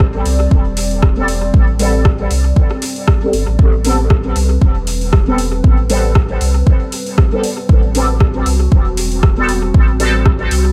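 An overdriven electronic kick sits up front throughout this meditative, hypnotic dub techno excerpt, moving at 117 BPM in 4/4 with a swung 16th feel in A dorian. Around it, a deep house kit of metallic hi-hats and rim clicks, also overdriven and re-recorded in a large room, trails off into dub echo. A clean, smooth sine sub bass with tube saturation anchors the low end, while a moody, wave-folded analog pad holds sustained chords with chorus, both breathing under sidechain pumping. From 1.2 s a juicy, detuned sawtooth polysynth adds resonant stabs with phaser, chorus and dub echo, its filter sweeping until 3.6 s, when the harmony shifts from Am7 to Am9. A very quiet bubbling texture of random filter steps murmurs beneath it all, in a dry, echo-heavy mix.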